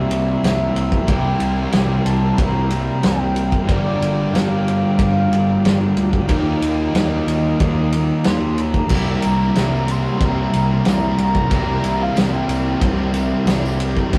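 A straight 4/4 pulse at 92 BPM drives this dreamy, brooding shoegaze and dream pop excerpt, where a loose indie drum kit with punchy kick and dark cymbals sits up front beside a thick, dark fuzz guitar riff, joined by a round fuzz-soaked bass, a bright double-tracked cranked stack guitar in the background and a soft horn-like synth lead with vibrato over a smooth, warbling vintage pad moving through C7, Gm7 and Ebmaj9. A second overdriven guitar and a jingly, very quiet tambourine join at 8.9 seconds, all in a rough, saturated rehearsal-room sound.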